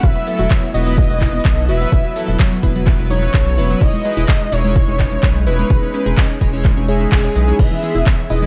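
A straight 4/4 pulse drives this hopeful, expansive progressive house passage, with a punchy, up-front electronic kick that drops out at 8.2 seconds and a house kit of crisp hi-hats, handclaps and crash cymbal, its hats and cymbals pumping with sidechain. A deep, round analog bass sits up front and pumps beneath a bold, thick unison lead carrying the melody through tape echo, shadowed by a very quiet, mellow supersaw on a second line. Glossy, chorused polysynth stabs and lush detuned pluck arpeggios, both pumping and delayed, move over a shimmering, ethereal pad of sustained chords from Bsus4/E through C#madd9/E to E, all set in a dark digital ambience.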